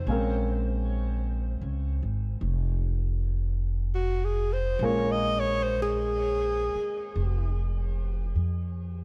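Set to a slow swung eighth-note pulse at 51 BPM in 4/4, this melancholic, smoky jazz ballad in Bb minor rests on a Bbm7 chord, cut from a longer piece and tuned to A4 = 439 Hz. A breathy, mellow alto saxophone takes the solo melody up front and close-miked, with vibrato and a diffuse ambient delay, before it drops out at 7.5 seconds. A concert grand piano with an open, deep-bottomed tone and lush chorus accompanies, while a woody pizzicato upright bass sits up front; both carry on to 9.0 seconds under a light reverb.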